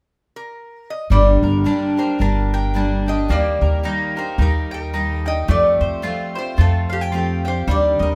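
A swung 4/4 groove at 110 BPM carries this intimate, melancholic acoustic folk excerpt in G minor, opening with a nasal, metallic lap resonator guitar played with slide and fingerpicks that carries the melody alone from 0.4 seconds. At 1.1 seconds the band joins: a woody, thumpy pizzicato upright bass sits up front, a bright picked steel-string guitar accompanies, and a round double-strung mandolin adds arpeggios as the chords move through G minor, E-flat and F add9. Light reverb gives the small ensemble an intimate sense of space.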